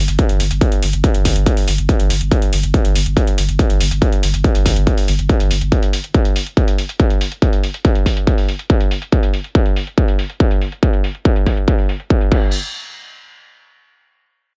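A deep, thick sub bass opens this dark, hypnotic stretch of driving peak-time techno at 141 BPM, saturated and overdriven, with sidechain pumping and a low-pass filter, and it holds until 5.7 seconds. A distorted, up-front electronic kick arrives almost at once and carries through to 12.4 seconds, set against a lower electronic kit whose metallic hi-hats and crash cymbal are softened by low-pass filtering. The mix is dry, cut from a longer piece.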